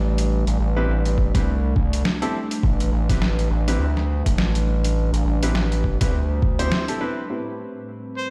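Heard through a big sound system in a bare stone room with little added reverb, this short glitch hop cut at 103 BPM in A minor swings funky and gritty over an Am9 chord, with a saturated, aggressive square-and-saw synth bass up front, a thumpy overdriven sampler-style kick with a pitched-down snare and hi-hat, clear vintage grand piano stabs through tape echo and a low-pass filter, and a nostalgic, warbling pad pumping in the background, until a break at 6.7 s gives way to a filter sweep on the pad at 7.3 s and a brilliant, punchy trumpet note with vibrato at 8.2 s.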